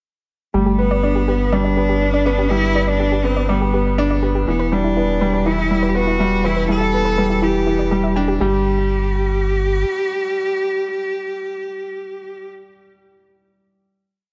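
A straight 4/4 pulse at 122 BPM carries this luminous, hopeful piano and strings electronica piece in G major, tuned to A4 = 436 Hz, moving from G to Em. Up front, a woody, polished upright piano plays a 16-step arpeggiated riff with delay over a deep, round sine sub bass holding sustained roots, while a soft, dark pluck with chorus and delay sits in the background, its five-step loop drifting against the bar, and a distant bowed cello with smooth vibrato sings arch-shaped motifs through delay. The drop runs until 8.4 s, when the chords fall away into a final note, and the piano lingers until 14.3 s in a small room with light reverb and a top end that stops around 10.4 kHz.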